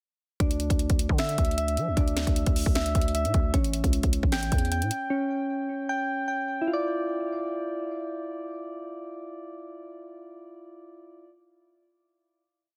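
A bouncy, half-time trap beat at 153 BPM in 4/4 drives this short, menacing and eerie hip hop piece in D harmonic minor. The electronic drum kit sits up front with a hard-clipped kick, a sharp snare layered with finger snaps, and metallic sixteenth-note hi-hats broken by fast rolls. Beneath it, a growling, buzzy 808-style bass holds long sub-bass notes that follow the kick and slide in pitch. A soft, round, electric-piano-like synth plays a mellow, patterned arpeggio in quarter notes, repeated like a sampled loop and coloured by chorus and tape echo, moving from Dsus2 to A7 over the hook. The drums and bass drop out around 5.0 seconds, leaving the keys to carry the closing Dmadd9 chord from 6.7 seconds, ringing on until 11.3 seconds. The digital ambience and dense, heavily limited modern master give the whole track a dense, loud sound.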